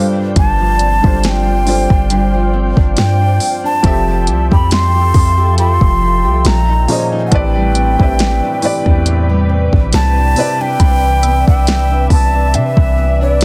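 A clay-toned alto ocarina sings an airy, vibrato-laced melody over a felt-muted upright piano with audible action noise, fingerpicked nylon-string guitar arpeggios and a glassy, chorused FM pad, while a very quiet synth bell glints briefly at the start and returns at 7.3 s; from 0.4 s a boomy 808-style bass and a smooth, tape-warm R&B drum kit with a fat snare sit up front, giving this sensual, moody contemporary R&B excerpt at 69 BPM a lightly swung sixteenth-note feel in a small room.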